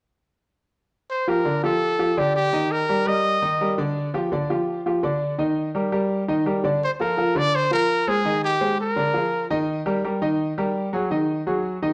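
Sunny and festive, this brisk Latin excerpt at 168 BPM in Bb major pairs an up-front trumpet, singing a vibrato-laced pop-style melody in plate reverb from 1.1 to 3.8 seconds and again from 6.8 seconds, with a brilliant concert grand piano whose deep bass carries the accompaniment through chords like Bb6, Dmadd11 and Bbmaj7 until 11.9 seconds, all set in a moderate large-studio room with a dark, warm production.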